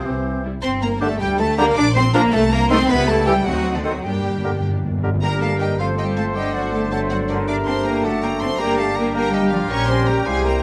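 A dramatic, urgent classical-period movement for symphony orchestra in G minor, in a quick 6/8 at 107 BPM, opens with an intimate, sul tasto violin section carrying the melody over a second violin section, an airy flute, a mellow oboe, a smooth-topped clarinet and a warm bassoon, while distant, roomy French horns hold sustained chords, lush portamento cellos and dark double basses anchor the bass, and very quiet violas fill in the middle, until hard-mallet timpani play a fill at 4.0 seconds and a trumpet adds stabs from 5.2 seconds, all in a moderate recital-hall space.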